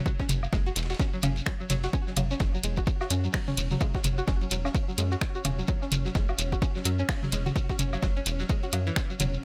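Lightly reverberant and sparse, this quirky minimal techno excerpt at 128 BPM swings its 16ths over an overdriven, punchy analog kick and a dry drum machine of finger snaps and hi-hat up front, with a rubbery, hollow square-wave bass pumping under the kick. A twangy, string-like resonator pluck riff with chorus and delay sits above them, alongside grainy shekere, electronic toms and woodblock, and a muffled, lo-fi soul kit of hi-hat, ride and snare in the background, before a swarming, tense, detuned drone enters at 2.7 s.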